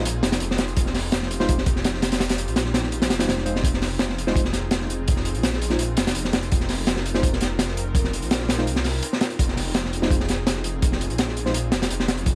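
Raw and frenetic, this drum and bass and jungle excerpt at 167 BPM in F minor sits on a single Fm7 chord, with a crunchy, saturated breakbeat kit up front, its high-tuned snare and punchy kick gritty and rolled-off, driving over a thick, menacing detuned saw bass, while a deep, nasal chord stab with chorus and dub echo and an airy, breathy, warbling pad with chorus hover in the background amid small room ambience and vinyl crackle.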